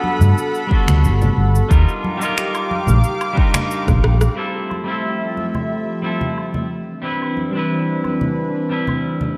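Sunset chillout at 90 BPM in F lydian, smooth and relaxed, where a thick, detuned sawtooth pad with chorus holds sustained chords over Gmaj9, Ebmaj9, Fmaj9 and Cmaj9 beneath twangy, delayed clean electric guitar accompaniment and ringing congas, while a dark, round, overdriven fingered bass and a deep, up-front overdriven electronic kick drive the opening until about 4.0 to 4.2 seconds, a drum fill arrives at 3.9 seconds, and a layered, overdriven kit of electronic shaker, finger snaps, woodblock and rim click continues through a dreamy plate-reverb-soaked mix.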